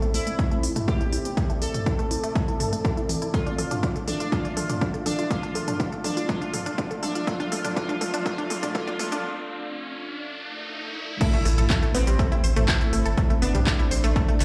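Melodic techno at 122 BPM in A minor, dark and dramatic, this excerpt builds tension before dropping at 11.2 seconds. A resonant, juicy polysynth carries the melody under a filter sweep, colored by chorus and tape echo, while a detuned sawtooth pluck spins lush arpeggios through its own sweep and echo. Beneath them, a moody pad with a sub octave and slow attack holds sustained chords in the background, drifting in chorus and reverb, with sidechain pumping breathing through the synths. A deep house kit supplies smooth hats, handclaps, toms and crash, playing a fill until the break at 9.2 seconds, and an overdriven, punchy electronic kick sits up front, re-recorded in a large room. A riser, swell and impact sweep in from 6.9 seconds and strike at the drop, where a round, sine-like analog bass enters at 11.5 seconds. The mix carries a large studio reverb with a high-pass filter, as if played on a big sound system in a bare room, moving from Am to Dm/A and back to Am.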